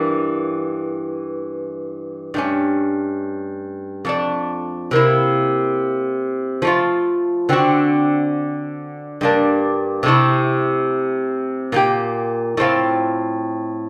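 This baroque-style classical dance for solo lute unfolds in a flowing, grave triple metre, its pulse bending freely with rubato. The lute carries the whole fragment from start to finish, fingerpicked on nylon double strings, some of them octave-doubled, with a warm, delicate tone. It sits up front in a large studio with a moderate reverb that lets each note bloom gently into the room. The harmony moves restlessly through diminished and seventh chords before settling toward G minor and F major near the close at 13.9 seconds. Cut from a longer piece, the passage feels like an excerpt from a solemn dance.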